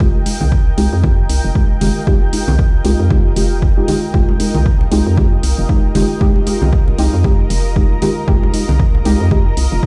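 A swung 116 BPM groove in 4/4 drives this late-night deep house passage in F minor, where an overdriven, punchy kick sits up front beside an overdriven electronic hi-hat and low-tuned congas in the background, while a hollow, bouncy FM bass and dark, full-bodied chord stabs on Fm9, carrying chorus, tape echo and a filter sweep, pump under sidechain against a cloudy, evolving granular pad, all heard as if played on a big sound system in a bare stone room.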